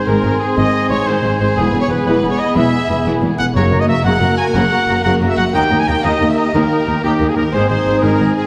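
Triumphant and soaring, this cinematic orchestral excerpt moves at 120 BPM in 12/8, with a lush, vibrato-rich violin section carrying the melody over a chord cycle of G#, E, F#, D# and back to G#. Supporting lines come from a second, softer violin section, an airy flute section, a distant oboe and a very quiet, mellow clarinet, while a French horn section holds sustained chords, an up-front trumpet with a gentle attack punctuates with stabs, and a faint viola section fills the middle. Clear, smooth cello and double bass sections anchor the bottom, and a crisp, hard-mallet timpani sounds briefly from 3.6 s to 4.0 s, all set in the generous bloom of a recital hall.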